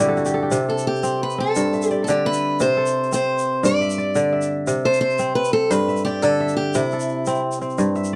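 A ringing, crisp kora opens with a brief fill before settling into arpeggios that span its low to high range, while a grainy tube shaker slips in beneath it at 0.2 seconds. This flowing, warm West African string piece in C major rolls along in 12/8 at 116 BPM (dotted quarters), alternating between G and C chords, and at 0.7 seconds a picked parlour guitar with fresh strings adds an up-front melody alongside the kora. Close, detailed microphones and light reverb frame this short section cut from a longer piece.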